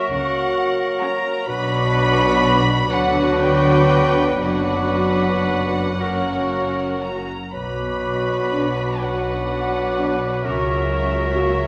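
A veiled, con sordino violin section carries the yearning melody in this melancholic classical fragment, its dark, bowed tone softened by vibrato and a distant, soft attack as it moves through a slow, rubato 6/8 lilt. Beneath it, a mellow bassoon holds the accompaniment alongside a muted viola section, while muted cellos and double basses, lush and dark, anchor the bass from 0.1 seconds. A second, quieter violin section enters together with the viola at 1.0 seconds, and the woodwinds weave second lines around the tune: an airy, hollow flute section high above, a solo oboe with a roomy, light-vibrato sound, and a smooth-topped clarinet set further back. A French horn section sustains mellow, vintage-tinged chords in the background until 11.5 seconds. The harmony circles around B minor and its dominant, closing on an F#7 chord at 10.4 seconds, and a lingering concert-hall reverb bathes the ensemble in a wet, spacious glow.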